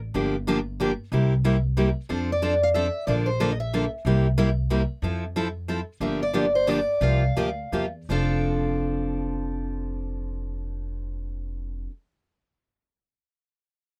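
A bright, up-front picked steel-string guitar carries the melody in this charming, lively swing waltz of acoustic jazz manouche, first appearing briefly at 2.3 seconds and returning at 6.0 seconds, where the music slows until 8.1 seconds. Beneath it, a boxy parlour-style steel-string guitar plays the chordal accompaniment, and a woody, thumpy pizzicato upright bass with gut strings sits up front. Both guitars carry fresh-string finger squeak in a dry, close sound, and the short passage is cut from a longer piece.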